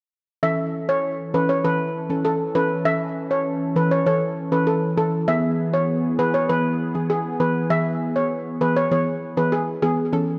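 Bouncy and sunny, this short dancehall passage, cut from a longer piece, moves at 99 BPM in a straight 4/4 feel in A major. A steel pan carries the melody up front from 0.4 s, its metallic, shimmering tone softened by rubber sticks into a mellow, slightly vintage color. Beneath it, a soft round pluck plays the accompaniment with a fast attack and decaying notes, its dark edge given movement by a filter sweep and chorus. A smooth analog pad holds sustained chords under both, warbling gently through a lush chorus with a soft attack and long release. The harmony sits on A before moving to E at 5.3 s, and the whole passage breathes in a moderate, lush hall reverb with a 2.4 s tail.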